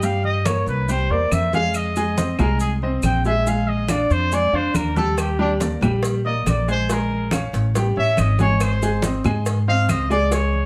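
A moderate studio room frames this short cut from a longer Afro-Cuban jazz piece, with a sophisticated yet lively mood over a straight 4/4 feel. The trumpet carries the melody as a jazz-style solo throughout, its soft attack and mellow tone set up front and bathed in plate reverb. Beside it, a clear concert grand piano supplies smooth accompaniment with deep bass, while a dark, woody pizzicato upright bass on steel strings sits prominently underneath. Bright, low-tuned congas with a thin-skinned, band-limited character stay in the background, grainy maracas are placed close, and woody claves enter from 0.5 s, also set back in the mix. A round, low-tuned cowbell with a small-room feel joins at 5.2 s, as the harmony moves through jazz changes such as Fm7, Bb7 and Ebmaj7 before landing on Ab.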